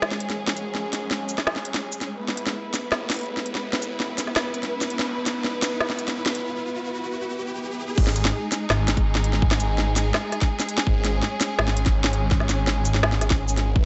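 Lightly reverberant and dull at the top, this tense, dark half-time drum and bass excerpt sets sustained, vibrato-laden bowed strings with 12-bit sampler grit and sidechain pumping over a thick, swirling phased saw bass, crisp-hatted drums with a woody snare, a faint pulsing gated texture that stops at 6.5 s, and a background riser building to a drop at 8.0 s, where a tight, layered electronic kick enters up front.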